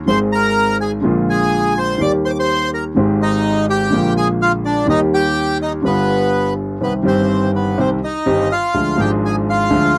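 Sultry and dramatic, this tango moves at 125 BPM in 4/4 with a loose, rubato feel, and it is cut from a longer piece. A reedy, dark bandoneon carries the melody up front, reaching from B3 to D6 across its 10 seconds. Beneath it, a warm grand piano plays the accompaniment, also close and present, ranging from deep in the bass up to Ab4. The harmony opens in Eb major, cycling through chords such as Abmaj7, Bb7 and Eb before a G7 at 5.8 s leads the music into C harmonic minor at 6.8 s, where a Cm chord and later a Ddim deepen the drama. The sound is dry and intimate, like a close 1970s-style studio recording with only light reverb.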